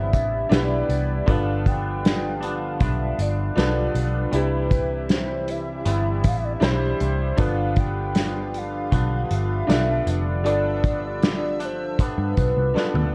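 Laid-back and hazy, this indie and bedroom pop excerpt moves at 78 BPM in a straight 4/4, cycling between Cmaj7 and G7 with tuning set to A4 = 445 Hz. A warbling, nostalgic synth lead carries the melody with vibrato, subtle chorus and analog delay, over a brilliant, woody upright piano, a clean, twangy electric guitar with chorus and pitch drift, and a lush, airy unison pad sitting in the background. Up front sit a round, foam-muted picked electric bass and an acoustic drum kit played with bundle sticks, a drum fill arriving at 12.8 s, while light reverb and a worn cassette-tape wobble colour the whole mix.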